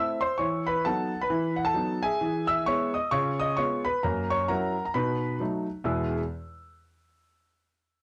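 A concert grand piano, intimate and up front with deep bass and audible action noise, plays this playful, exuberant stride jazz fragment alone at 132 BPM in 4/4 with a swung feel in E major. Spanning E2 to E6, it moves from B7 over E through E, C#7, F#7 and B7, lands on E at 5.9 seconds, and stops at 6.2 seconds. A small room adds moderate reverb, and the dry cassette recording gives the sound a gritty edge.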